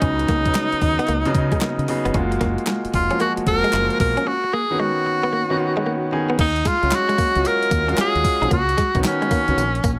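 A swung sixteenth-note groove at 113 BPM in 4/4 drives this slick, bouncy new jack swing excerpt, cut from a longer R&B piece. A crisp 8-bit digital drum machine supplies a thumpy kick, fat snare, hi-hat, handclaps, tambourine and crash cymbal with a sampler-style, small-room character, while a deep, round dub-style fingered electric bass anchors the low end with a dark tone. Up front, a clear tenor saxophone carries the solo melody with vibrato, a punchy attack and a smooth top, and an intimate concert grand piano accompanies with deep bass, long sustain and audible action noise. A clean, picked electric guitar recorded direct plays a compressed riff through analog chorus, and a very quiet, close and dry group handclap joins at 0.5 seconds. The harmony moves through Db9sus4, Gbmaj9 and back before shifting to Ebm11 for a new section at 6.4 seconds, all set in a light reverb.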